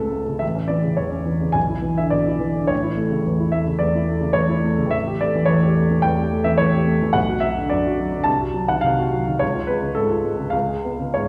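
The pulse moves in a flexible 4/4 at about 107 BPM, pushed and pulled by a rubato feel that lets each phrase breathe. This is a romantic classical character piece for solo piano, and its mood is bittersweet and brooding. A baby grand carries everything for the full 11.3 seconds, its tone warm, present and up front, reaching from F#1 to A5 and tuned slightly low with A4 at 439 Hz. The harmony opens on A and passes through E5/B and A7 before darkening through Bm, Cdim and C#, settling on C#7 at 10.5 seconds. A wet recital hall reverb with a 1.6-second decay places the listener further back in the room, giving the brief passage, cut from a longer piece, a sense of space around the instrument.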